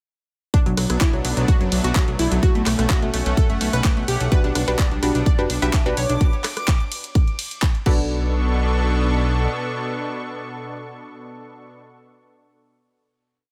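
Set in a digital ambience, this bittersweet, driving progressive house piece opens straight into its drop, where a punchy four-on-the-floor electronic kick and programmed hi-hats, handclaps, rim clicks, ride and crash, both in a small room, run until 8.0 seconds beneath a fat, rolling sixteenth-note analog bass, a bright, chorused analog pluck riff with tape echo and a lush, slow-attack supersaw pad, all three pumping with the sidechain, while a detuned unison pluck adds dotted-rhythm chord stabs from 4.3 seconds and a reversed, dreamy swelling texture holds a high note in the background around 5.2 seconds, before the bass carries into the final hit until 9.5 seconds and the pad and plucks sustain it to the end.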